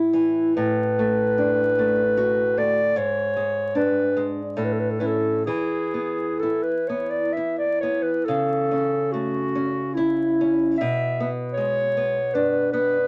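A soft-attack, close-miked clarinet sings a serene, tender melody up front in this romantic duo in A major, drifting in a rubato 3/4 at 63-80 BPM over a small, fingerpicked nylon-string guitar with fresh strings and a warm tone, all set in a wet studio ambience with vinyl crackle in a 13.1-second passage cut from a longer piece.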